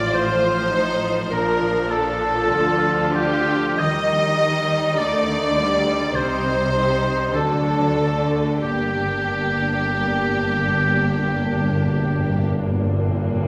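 A slow, solemn orchestral movement in G minor opens at once with a full string and wind texture, moving at roughly 45-52 BPM in a rubato 4/4 with an elegiac weight. A rich, focused violin section carries the melody with vibrato, while a second, clear and intense violin section sits in the background on a second line beside a warm, punchy solo oboe that sounds roomy and set back. Beneath them, a smooth, even viola section provides accompaniment, a lush cello section and an expressive, close double bass section hold the bass, and a concert harp rings out fingerpicked arpeggios in the background. The harmony moves from F7/A through Bb, Eb, C minor and D before settling on G minor, where hard-mallet timpani enter at 8.6 seconds with an articulate, dry fill. The violins and oboe fall away at 12.5 seconds, leaving the lower strings, harp and timpani to close this fragment of a longer piece, all heard from further back in a reverberant scoring stage.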